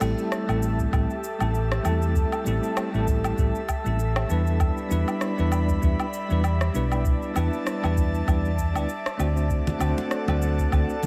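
Smooth and wistful, this sunset chillout excerpt sways with a swung sixteenth-note feel over Am7, Em7 and D7 chords. A bell-like tine electric piano with digital delay and a breathy, detuned pad with chorus carry the harmony, while a dark, round hollow-body bass with tube saturation sits up front. Layered electronic woodblock, shaker and rim click and a deep electronic kick from 0.8 s share a studio reverb, and hard-handed congas in a small room join at 9.7 s.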